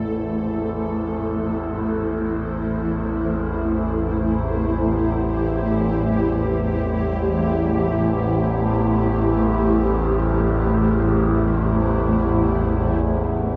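A low, overtone-sweeping drone fades in from the start and grows over the first 13.0 seconds, its sawtooth-and-sine tone bright and resonant with shifting overtones, chorus and its own reverb, while a granular cloud pad holds sustained chords above it, mellow, detuned and blurred. This is an ominous dark ambient piece in free time, resting on a single A minor chord throughout a short passage cut from a longer work. Both parts sit up front in a dreamy, cassette-tinged mix drenched in a huge reverb with an 8.2-second decay.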